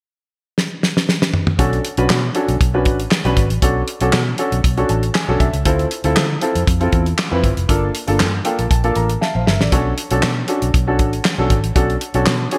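This short, slick, late-night slice of early-eighties boogie funk opens with a damped drum kit playing a fill at 0.6 seconds, its dry, fat snare and tight kick sitting up front under gated reverb. At 1.6 seconds a baby grand piano and a muted fingered electric bass enter together over a straight 4/4 groove at 118 BPM. The kit carries handclaps, hi-hat, toms and a rolled-off top end. The piano, natural and up front and treated with lush chorus, moves through Bm9, Dm9 and Gm9 before returning to Bm9, adding its own fills along the way. Beneath it, the dark, round, foam-muted bass has an amped character, and a second drum fill arrives near 9.2 seconds. The bright, digital 1980s-style production places the parts in a light, small-room ambience, and the clip is cut from a longer piece.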